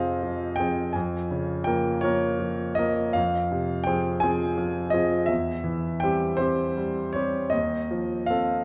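In a rubato 12/8, this wistful, mournful romantic nocturne for solo concert grand piano, cut from a longer piece, drifts through Fm, Bbm/F, C/E and F7/Eb, its clear, intimate tone placed up front with deep bass, long sustain and audible action noise, all set in a wet concert hall with a dark production.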